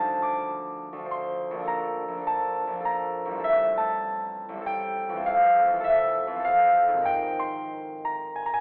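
Classical solo harp music, this brief excerpt cut from a longer piece carries a dreamy, graceful mood in triple metre with uneven, rubato beats. The concert harp plays alone for the full 8.6 seconds, sitting up front with a bright, ringing, thumb-plucked tone that spans from A1 up to D6. Its harmonies drift through Dm7, Bbmaj7, Am7 and Fmaj7 before settling unexpectedly on Abadd9 at 7.1 seconds, lending a hazy shift of colour at the close. A moderate recital hall reverb lets the plucked notes bloom into the space, while vinyl crackle and a narrow, telephone-like filtering give the sound a faded, nostalgic character. Tuning sits slightly above standard pitch.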